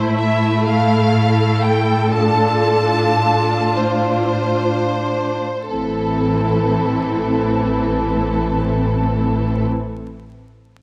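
Melancholic and yearning, this slow romantic movement for string orchestra in a rubato 6/8 sways through a slowing opening as an up-front violin section sings the focused, vibrato-rich melody over a distant second violin line, lush viola accompaniment with expressive portamento and a close cello bass, while a smooth double bass section returns at 5.7 seconds, all wrapped in moderate scoring-stage reverb and vinyl crackle within a dark, warm production.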